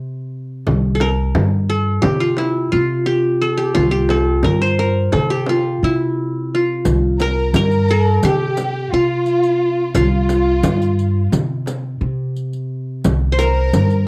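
Warm and passionate, this Turkish makam ensemble piece moves in a straight 9/8 and is cut from a longer work. An upright bass opens at the very start, plucked pizzicato with a woody, thumpy tone that sits up front. The darbuka, small and high with a clay shell, and the frame drum, struck with hard hands in a live room, quickly join beneath it. From 0.9 seconds the qanun carries the melody up front, its fingerpicked triple strings bright-edged and tinged by cassette tape. Around 6.9 seconds a riq adds its close, dry jingles, and at 7.2 seconds a lush bowed violin section follows with an expressive second line full of vibrato and portamento. The whole has the feel of a home cassette recording with a moderate studio reverb.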